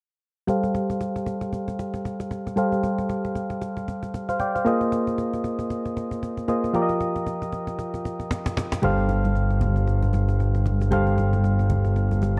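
A snappy, close cajon struck with hard hands sets a swung sixteenth-note groove in four from the start of this hypnotic, late-night amapiano excerpt. Over it, soft electric-piano-like synth keys sit up front with a round, gentle, warbling vintage tone, their chorus and low-pass filter giving them a mellow sheen while a filter sweep runs through the whole passage. The keys move through lush suspended ninth chords, G9sus4, Bb9sus4 and F9sus4, before returning to G9sus4. A short drum fill at 8.3 seconds leads into the entry of a fat, thick, detuned analog bass at 8.8 seconds, pushed up front with a plucky filtered attack and sustained low notes. Bright, dry congas played with soft hands join in the background at the same moment, and the dark, lightly reverberant production keeps the mood smoky and intimate until the cut at 12.4 seconds.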